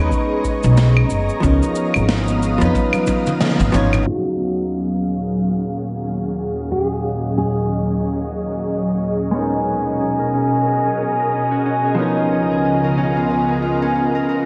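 Sunset chillout with a warm, smooth mood, where a dark hollow-body jazz guitar accompanies and an airy, warbling pad sustains chords throughout, a woody pizzicato upright bass, overdriven electronic kick and brushed kit with cabasa and claves carry the opening until a drum fill, then a fingerpicked nylon-string guitar takes the melody from 4.1 seconds and a ringing concert harp plays arpeggios from 9.3 seconds, all in a dreamy, reverb-soaked mix with a filter sweep from 4.1 seconds onward.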